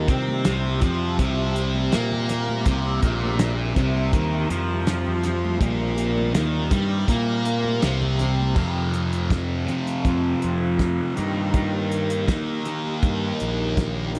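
A straight 4/4 groove from a cloth-damped, thuddy acoustic drum kit anchors this hazy, hypnotic psychedelic rock excerpt, with a fat snare, tight kick, dark cymbals and hi-hat carrying a rolled-off top and a touch of tape echo. Up front, a thick, double-tracked fuzz guitar plays a bright, picked riff soaked in distortion, phaser and tape echo. Beside it, a fingered electric bass with overdrive delivers a round, punchy low end. Beneath them, a very quiet vintage string machine set to cellos holds mellow, soft-attack sustained chords with ensemble chorus and a sub-octave sawtooth body. High-tuned congas played with soft hands ring faintly in a small room until 8.6 s, where the harmony moves from C to F before settling on Eb/G at 11.2 s. The echo-heavy mix sits in light, small-room reverb, giving the whole cut a drifting, smoky feel.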